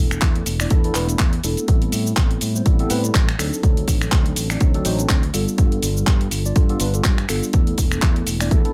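A punchy, up-front electronic kick drives this funky, sensual filtered disco house excerpt at 123 BPM in 4/4, with a 56% swing on the sixteenths, while a tape-warm house kit of finger snaps, handclaps, hi-hat and shaker pumps against the sidechain on its hats and percussion. A growly, overdriven fingered electric bass ranges from E1 to A2 beneath a mellow tine electric piano, which carries phaser, gritty 12-bit sampler colour and sidechain pumping as it moves through E7sus4, Am9, D7b9 and G9 before returning to E7sus4 at 7.5 seconds. The drums carry the sense of a large room, and digital ambience surrounds the groove.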